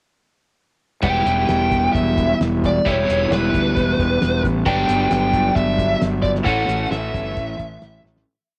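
A straight 4/4 pulse at 133 BPM drives this short indie rock piece in E dorian, its cool, restless mood carried by a cloth-damped drum kit that sounds dry, dark and thuddy, with a fat snare and a tight kick. Under it, a fuzz fingered electric bass sits up front with a driving eighth-note line, overdriven and direct. A crunchy overdriven guitar rings out chords in its riff, while a twangy twelve-string electric guitar with subtle chorus adds bright, clean, picked chords from the background. On top, a dark, compressed fuzz lead guitar plays a motif-based melody in song-like phrases. The chords move from Em to Gmaj7 at 4.7 seconds and A6 at 6.5 seconds, where a fade-out begins, ending with a drum fill at 8.1 seconds, all with little reverb and the character of a home cassette recording.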